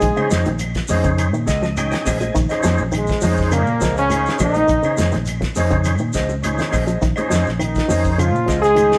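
A punchy, up-front trombone carries the melody in this funky, driving afrobeat excerpt, set in Bb minor at 103 BPM in a straight 4/4 over a single Bbm11 chord. Behind it, a breathy, whispered trumpet and a bright bass trombone with vibrato sit in the background on second lines, while a round, dark fingered electric bass anchors the low end. A twangy guitar through an envelope filter picks arpeggios in the background, and a mellow, clean electric guitar adds fingered stabs higher up. A percussive tonewheel organ, lightly overdriven with key click, chorus vibrato and a slow rotary speaker, joins at 0.2 seconds and plays a fill from 1.2 to 2.4 seconds. The dry 70s drum kit, with its fat snare and tight kick, drives the groove alongside a grainy shekere, distant woody claves and soft, high-tuned congas. The band sounds as if playing live together in a moderate stone room.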